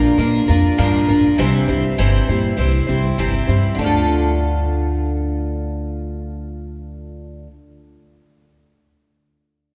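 A picked twelve-string acoustic guitar, shimmering and octave-doubled, opens together with a woody, growly pizzicato upright bass, both sitting up front in this wistful, reflective rock fragment at 100 BPM in D minor. The guitar's bright accompaniment moves from Bb to C before settling on D minor at 3.8 seconds, while the thumpy bass anchors the low end. A wet church reverb with a long 3.4-second tail gives the short passage the airy space of a concert hall.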